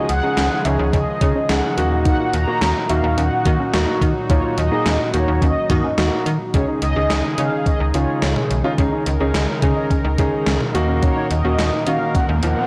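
A straight four-beat groove drives this melancholic, cool synth-pop passage, built on a gated 80s digital drum machine whose thumpy kick, gated-reverb snare, hi-hat, toms and cowbell sit up front with a tape-tinged, big-room character. Beside it, a slap-like FM bass brings a snappy, metallic attack and saturated edge, while a concert grand piano supplies accompaniment with a deep low register. Behind them, a smooth, detuned analog pad holds sustained chords with a chorused sheen, and a soft, round pluck traces dark arpeggios in the background through chorus and delay. On top, a mellow synth brass carries the melody with a brassy, evolving tone, a filter sweep and echoing delay, over harmony that moves between Dbsus2 and Ebm. The whole mix sits in a plate reverb and sounds blown-out and overdriven, and a very quiet riser slips in at 12.0 seconds just before this short cut from a longer piece ends.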